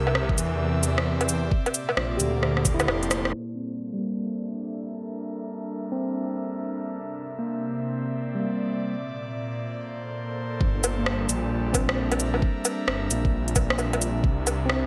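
Wistful and nocturnal, this future garage excerpt moves at 132 BPM in G dorian with a swung 16th-note feel. A clean tine electric piano played through a combo amp, with delay and a low-pass filter, and an airy, breathy, chorused pad both pump against the sidechain throughout, while a menacing, saturated detuned saw bass sits up front alongside a knocking electronic kick and a tape-warm garage kit of metallic hi-hats, cabasa, rim click and woodblock with gated reverb. After a drum fill at 2.4 seconds, the bass and drums drop away at 3.3 seconds as a filter sweep runs over the electric piano, then return at 10.6 seconds, all set in a bright 1980s-style digital sheen over C7, Bbmaj9 and Gm69 chords.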